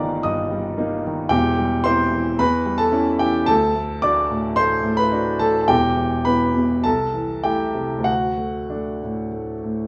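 A romantic classical character piece for solo piano, warm and lyrical, unfolding in a flexible rubato over four beats to the bar across a short cut from a longer work. The baby grand has a warm, natural tone and spans from deep bass at E1 up to Eb6, moving through chords such as Eb/G, A7/E, Em and Am/C before settling on D. A generous large-studio reverb places the listener further back in the room, lending the instrument an airy, spacious glow.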